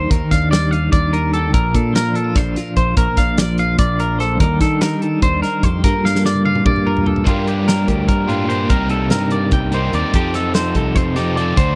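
A dry, close 1970s-style studio sound frames this restless, intricate fragment of math rock and midwest emo in 7/8. A compressed, clean twelve-string electric guitar with tremolo carries the accompaniment while a bright, scooped twangy guitar picks arpeggios with spring reverb, over a growling overdriven fingered bass and an up-front acoustic drum kit with a tight kick, whose fill from 6.0 seconds leads into a new section. There, from 7.3 seconds, a dark, double-tracked overdriven guitar adds a riff as the chords move from Gm7 through Cm7 to F13.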